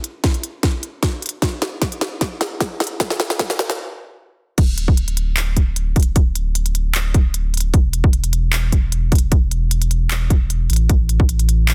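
A half-time feel in four drives this bright, lush future bass excerpt, cut from a longer piece. It opens on a build-up in which the trap drum kit, with its sharp snare, crisp hi-hats, handclaps and crash cymbal, plays a drum fill alongside a hard-clipped electronic kick, both sitting up front. At 3.8 seconds everything stops for a brief pause, and the drop lands at 4.6 seconds. There a deep, thick sub bass enters, saturated and triangle-toned, with a fast attack and long sustain, pumping through sidechain compression. The sound is dry, with a dense, heavily limited modern master.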